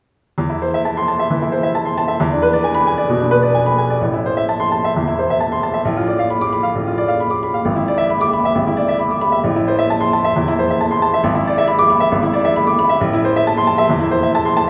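Pushed and pulled in a rubato 4/4 at 134 BPM, this stormy, agitated classical virtuoso piano study in A minor is carried entirely by a solo bright baby grand piano, brilliant and open with a short sustain, ranging from G#1 to D6 and playing from 0.4 to 14.7 seconds, while a wet recital-hall reverb places the listener further back in the room as the harmony moves restlessly through A minor, Bm7b5 and E7.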